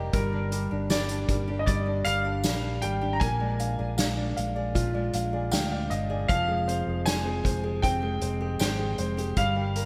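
Pop ballad excerpt at 78 BPM in an emotional, melancholic mood, where a polished, up-front baby grand piano sings the melody through lush chorus over a woody, intimate upright piano with audible action noise that adds a fill at 5.1 seconds, fingerpicked nylon-string guitar arpeggios with subtle chorus and digital delay, a dark, round fingered electric bass, a soft-mallet drum kit whose punchy kick and snare carry gated reverb, and a very quiet, jingly tambourine entering at 0.9 seconds, all moving through Gm7, Bb7 and Fmadd9 in a bright 1980s-style hall.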